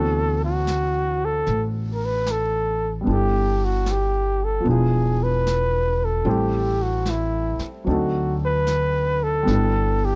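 A romantic, late-night jazz ballad in G major at 75 BPM with a swung 4/4 feel, cut from a longer piece. A breathy, whispered flugelhorn carries the melody up front with mellow vibrato and a soft attack, over a baby grand piano's present accompaniment and a woody pizzicato upright bass, while a brushed jazz kit on snare and hi-hat joins at 0.7 seconds. The dry, close 1970s-style studio sound keeps it intimate as the chords move from D13 through Am7 and D7b9 to settle on G69.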